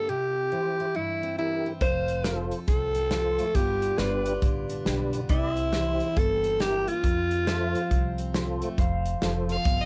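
A swung 4/4 feel at 138 BPM carries this sunny, heartfelt honky-tonk and classic country snippet in F major, cut from a longer piece. A picked steel-string acoustic guitar with a full-bodied dreadnought tone and a mellow, round tonewheel organ, turning through a slow rotary speaker with chorus vibrato, set the groove before the natural country drum kit, woody pizzicato upright bass and clean pedal steel guitar chords arrive at 1.8 seconds. Up front, a growling alto saxophone carries the melody with a raspy subtone, jazz-style phrasing and scooped notes until 8.4 seconds, over chords moving from C through F, G7 and C7 back to F. The drums sound airy and polished, with a punchy kick and a medium-tuned snare, while the bass adds a thumpy, growly low end. A bright, intense bowed fiddle with light vibrato steps forward for a brief solo at 9.5 seconds as the music turns to a new section. The home cassette recording carries little reverb and gives most of the parts a tape-worn character.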